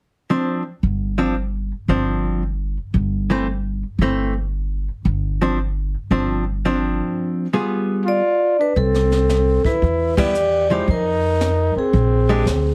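A relaxed swing at 113 BPM in 4/4 opens this playful small-group jazz excerpt, as a clean, hollow-body archtop guitar comps from 0.3 seconds over a thumpy, woody upright bass. At 8.1 seconds a ringing, dry vibraphone takes the melody while a breathy trumpet with vibrato and scooped notes adds a smooth second line. At 8.8 seconds a soft brush kit with dark cymbals and a punchy kick joins, and the band hits an accent before the piece is cut off, all heard through a heavily compressed, radio-like sound.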